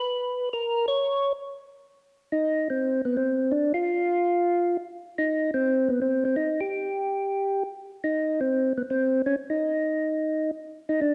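A percussive tonewheel organ carries this soulful, greasy jazz excerpt alone, its mellow, round tone sitting up front with third-harmonic percussion and a slow rotary speaker. The swung 4/4 moves at a brisk 168 BPM, tuned to A4 = 441 Hz, with the organ staying between Cb4 and Db5. A moderate large-studio reverb surrounds the part, and after an opening 2.1 seconds the music moves into a new section that runs to 11.1 seconds.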